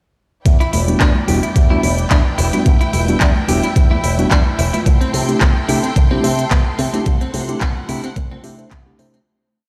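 Heard through a big sound system in a bare stone room, this sleek, groovy nu-disco piece opens at 0.5 seconds on a thumpy, up-front four-on-the-floor electronic kick, with a layered pop kit adding crisp hats and a handclap disco backbeat. An octave-jumping picked electric bass with an envelope filter sits punchy beneath, a clean electric guitar repeats a compressed 16-step riff through lush chorus and analog delay, and distant, high-tuned congas tap in the background. A mellow tine electric piano plays syncopated rootless chord stabs and a biting, vibrato-rich string section holds sustained chords, both pumping with the sidechain, before the whole groove fades out from 6.3 seconds.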